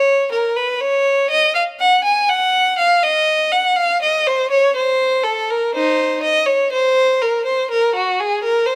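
Closely miked and finely detailed with a touch of light reverb, this short excerpt from a longer classical piece places a single bowed violin up front, its tone rich, even and smooth with vibrato. In the manner of a baroque-style suite movement for solo violin, the player moves through a grave, solemn line between Eb4 and Ab5 at a slow 61 BPM in 4/4, shaping the time with rubato across the full 8.8 seconds. Tuned to A4 = 439 Hz, the instrument keeps a silky top register throughout.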